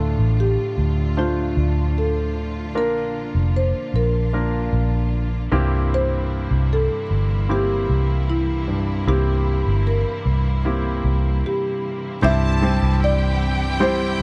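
A mellow, woody marimba played with soft mallets carries the melody from the start of this hopeful, emotional pop ballad at 76 BPM, over a clear, polished baby grand piano, a round, punchy muted electric bass sitting up front, and a lush, distant string section holding smooth sustained chords through Dm, Bb and C7. After a break at 11.4 seconds, the music moves to C at 12.2 seconds, where an expressive violin section adds a high second line and a full-bodied picked steel-string acoustic guitar plays arpeggios in the background. The dry, close sound has a 1970s studio character, and this is a short cut from a longer piece.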